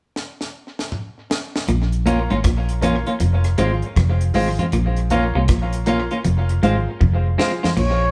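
This short roots reggae fragment opens with a deep, dry drum kit playing a fill from 0.2 seconds, its high-tuned snare, tight kick, rim clicks and toms sitting up front with a touch of tape echo. At 1.7 seconds the band drops in on a minor chord: a round, foam-muted electric bass carries the low end with a dark, amped tone, while quiet congas and a twangy guitar riff at the edge of break-up, treated with tremolo and tape echo, sit in the background. Moments later a bright, compressed clean electric guitar takes up the accompaniment up front, and a natural-sounding baby grand piano adds echoed stabs higher up. The harmony sways between two minor chords, giving the groove a hypnotic, meditative pull under a moderate stone-room reverb that makes the band feel like it is playing live together. Another drum fill leads into the final moments, where a flugelhorn enters at 7.8 seconds with a single scooped, vibrato-laden note before the cut.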